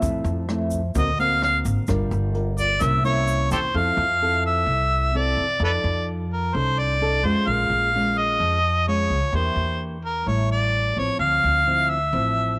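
A small, lightly reverberant room gives this relaxed, romantic bossa nova excerpt an intimate sound. Up front, a vintage-toned harmonica enters at 1.0 seconds with a soft attack, light vibrato, scooped notes and tongue slaps, soloing in a jazz style over the opening chords. Behind it, a dark, classical nylon-string guitar is thumb-plucked, while a woody pizzicato upright bass carries the low end throughout. In the background, a smooth brushed drum kit with a boomy kick, hi-hat and rim click plays alongside a grainy, close tube shaker, and both have dropped out by 3.7 seconds, leaving harmonica, guitar and bass. The harmony moves through rich jazz chords such as Fmaj7, C7b9, Bbm7 and Em7b5 before settling on Dm9.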